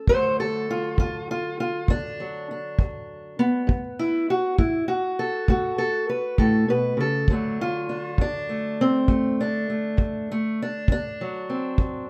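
A slow, swaggering 12/8 shuffle-free lilt at 67 BPM carries this laid-back acoustic country blues excerpt in D mixolydian, where a dark, boxy parlour steel-string guitar, fingerpicked up front with plate reverb, leads the melody over a tight, smooth kick drum played with brushes and a rolled-off top, moving from D through a chordless stretch at 3.7 seconds before the guitar takes a solo over D7 from 7.3 seconds, all in a moderately reverberant studio.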